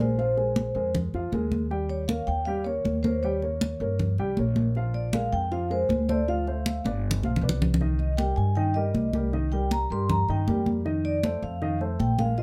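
A straight 4/4 groove at 157 BPM drives this lively, danceable Afro-Cuban jazz excerpt: bright, high-tuned congas struck with hard hands sit close and up front from 0.2 seconds, beside a woody, thumpy pizzicato upright bass on gut strings. A mellow vibraphone played with soft mallets carries the melody, its metallic ring shimmering with a slow motor vibrato and plate reverb, while a dark upright piano with short sustain comps underneath. The harmony moves from Bb7sus2 through Eb, Dm7 and G7 to Cm7 and F6, with a fill arriving at 6.9 seconds in a lightly reverberant room.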